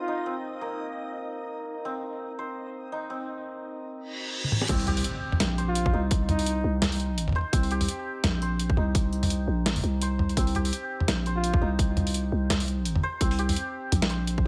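A light reverb gives this tense, dark half-time drum and bass excerpt a close, shadowy sound. It opens on a bright, shimmering santur playing ringing hammered arpeggios through dub echo, with a filter sweep across it. Alongside it, a reversed, dreamy backwards swelling texture drifts detuned and granular, soaked in its own reverb. A muted trumpet with a bucket mute appears only in brief phrases, its veiled, jazz-style solo line carrying light vibrato through tape echo and vintage 12-bit sampler grit. An electronic reverse cymbal rises from 4.1 seconds, and a sampler-style boom bap kit enters with a fill just before the drop at 4.7 seconds, where an impact lands. From there, an overdriven, hard-clipped electronic kick sits up front with a growling, buzzy 808-style bass and the gritty, pitched-down, tape-toned kit, whose filtered snare, hats, toms and crash ride a swung half-time feel.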